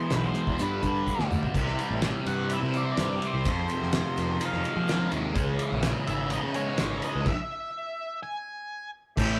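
A straight 4/4 groove drives this dark, trippy psychedelic rock fragment, built on a cloth-damped, thuddy drum kit with a fat snare, tight kick and dark cymbals, plus a faint, grainy tube shaker; a drum fill lands at 1.1 s and the band hits a stop at 7.3 s. Up front, a double-tracked fuzz guitar with phaser grinds out the riff over an overdriven picked bass, while a shadowy octave-fuzz lead carries the melody and a reedy tonewheel organ with key click and slow rotary speaker sits softly beneath, moving from E and G7 through C, Fm7 and C#madd9. The rough rehearsal-room recording carries tube saturation and a moderate stone-room reverb.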